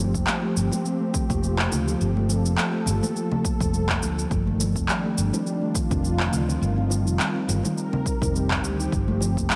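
A smooth, detuned analog pad with chorus and sidechain pumping holds sustained chords from the start, while a ringing steel tongue drum, struck with firm rubber mallets and softened by a low-pass filter and tape echo, plays meditative arpeggios over a round, dark fretless bass. Punchy overdriven electronic kicks join alongside up-front, layered cabasa, handclaps and congas, and very quiet acoustic bongos and congas played with soft hands enter at 0.7 seconds. This cut from a longer organic downtempo piece has a gently swung, warm and mystical feel, moving from Gm11 through F13 and Eb6 before returning to Gm11 under light reverb.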